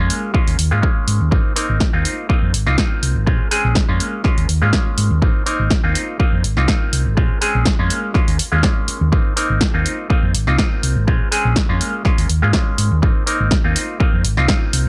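Set in a digital ambience, this sunny, feel-good filtered disco house excerpt moves at 123 BPM in 4/4 with a light 16th-note swing, cycling through Eb9sus4, Ab69 and Bbm9 in Ab major. An up-front, tape-warm electronic kick enters at 0.3 seconds beneath a dark, round hollow-body electric bass and a nasal, stringy clav played through a combo amp with phaser. Both the bass and the clav carry sidechain pumping and a low-pass filter. A dry analog drum machine adds hi-hats with their own sidechain pumping and a punchy, overdriven snare.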